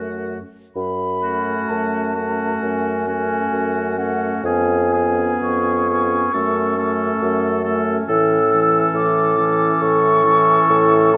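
A recital hall's moderate reverb, with a decay of about 1.6 seconds, gives this classical wind-quintet passage a roomy, natural glow. It is a short cut from a slow, lyrical romantic movement in F# minor, moving freely with rubato in 4/4 at roughly 59 to 70 BPM and tuned slightly high to A4 = 441 Hz. The concert flute carries the melody from 0.8 seconds, singing between F#5 and E6 with a pure, hollow tone, soft attack, lifted highs and vibrato. Beneath it the oboe sounds distant in a second line between F#4 and A4 with light vibrato, the clarinet holds a gentle C#4 in the background, and the French horn adds a punchy accompaniment between E3 and B3. The bassoon sits up front with a dark, vibrato-tinged bass between E#2 and A2. The harmony moves from F#m through C#7/E# back to F#m before opening onto A, leaving a warm, lyrical mood.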